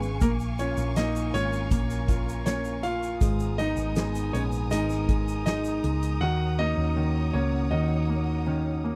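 This is a pop ballad in E-flat minor at 80 BPM, moving in a straight 4/4 with a longing, melancholic mood, and the brief passage is cut from a longer piece. A concert grand piano carries the melody from 0.2 seconds, sitting up front with an intimate, vintage tone, deep bass and audible action noise. Beneath it, a clear, woody upright piano with short sustain plays accompaniment, while a dark, lush studio string section holds bowed chords with expressive vibrato and a smooth top. A round, punchy hollow-body electric bass stands up front, and a soft-mallet drum kit with a fat snare and boomy kick plays with a grainy, bright egg shaker in the background until both stop at 6.2 seconds. A very quiet fingerpicked dreadnought steel-string guitar adds full-bodied arpeggios from 3.2 seconds as the chords move from Bbm7 through Abmadd9 to Ebm7. The sound is dry and close, in the manner of a 1970s studio recording with little reverb.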